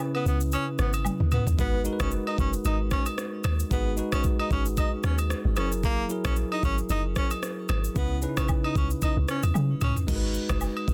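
Mellow and smooth, this afrobeats excerpt moves at 113 BPM in G# minor with a light 16th-note swing, opening on a short break with a drum fill at 1.1 seconds before settling into chords that drift from C#m7 through G#m7 and F#9. A breathy tenor saxophone carries the jazz-style solo with light vibrato over a clean, bell-like tine electric piano, while a deep, round log drum bass with a dark, percussive FM attack sits up front alongside the produced electronic drum kit, whose knocking kick, rim clicks, shaker, toms, crash and softly clipped snare carry a large-room character. Close acoustic agogo bells and woodblock with egg shaker and group handclaps fill out the groove, another fill arrives at 9.6 seconds, and the dense, heavily limited master keeps the sound dry and immediate.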